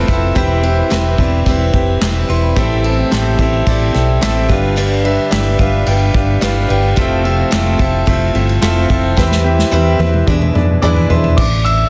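Bittersweet and driving, this piano-driven pop excerpt moves at 109 BPM in A minor, with a dark, mellow baby grand piano up front carrying the accompaniment through chords such as Cmaj7/E, Am7, G7 and Fmaj7. A round, hollow-body electric bass sits prominently beneath it, while a bright, boxy picked archtop guitar plays a riff and a distant, roomy acoustic drum kit with punchy kick, dark cymbals, handclaps and a softly clipped snare drives the groove. A drum fill runs from 9.2 to 11.4 seconds as the harmony turns to E7 and lands on A5, all framed by light reverb and a dense, heavily limited modern master.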